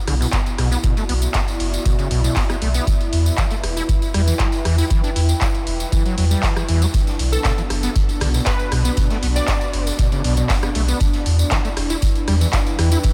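Hypnotic and trippy, this acid house excerpt moves at 118 BPM in straight 4/4, in B minor, cycling between Bm and Em7. A deep, round sine sub bass sits up front with tube saturation, while a squelchy, resonant sawtooth acid bass with distortion, filter sweeps and delay carries the riff. Behind them, a smooth, detuned sawtooth pad holds sustained chords with chorus and 12-bit sampler grit, and a warbling, nostalgic lo-fi pad adds a mellow texture with its own built-in reverb, both pumping against the sidechain along with the basses. A deep analog kick drives the groove, joined by a punchy drum machine of handclaps, hi-hat and rim click re-recorded in a large room, plus a jingly, close tambourine. From 6.9 s a very quiet, gritty garage kit with hi-hat and snare slips in, and from 7.3 s to 9.9 s a bright, catchy unison lead with vibrato and a diffuse ambient delay plays a short melody.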